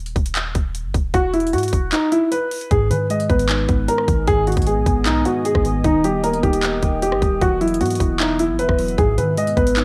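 A cassette home recording with light digital ambience carries this brooding, melancholic trap piece in G# minor at 153 BPM, set in a half-time feel. A boomy, sine-like 808 bass and an overdriven, up-front trap kit of hard-clipped kick, metallic hi-hats, handclaps and rim clicks open the music, and a dark, mellow, worn grand piano takes the melody at 1.1 seconds with its action noise audible. Muted, felt-like synth keys with chorus join at 2.7 seconds, and a deep, detuned sawtooth ambient pad settles into the background at 3.8 seconds over chords moving through Esus2, G#m and D#.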